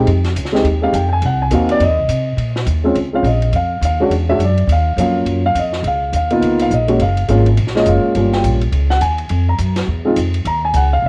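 A home cassette recording in a small room with light reverb captures this brief excerpt of moody, smoky jazz piano trio. At a brisk 208 BPM in swung 4/4 and Bb minor, the dark, mellow grand piano takes the melody as a solo throughout, its tone tinged by cassette tape, over harmonies moving from Fm9 through Ebm9, Db13 and Gbmaj7. The upfront upright bass is plucked with a woody, steel-string sound, while a compact cocktail drum kit sits low in the mix, a dry, tape-colored kit of hi-hat, dark ride cymbal and high-tuned snare.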